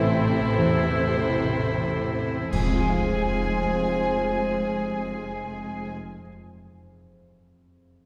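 Bittersweet and moving, this slow, rubato cinematic orchestral cue in F minor at 58-69 BPM sets a veiled, con sordino violin melody over a clear solo oboe, hollow flutes, a second muted violin line, very quiet violas, dark French horn chords, ringing fingerpicked harp arpeggios and a foundation of lush cellos and muted double basses, all resting on a soft felt-muted upright piano that lingers until 8.1 s, while clash cymbals and concert bass drum add an accent from 2.5 s in a reverberant concert hall heard from further back.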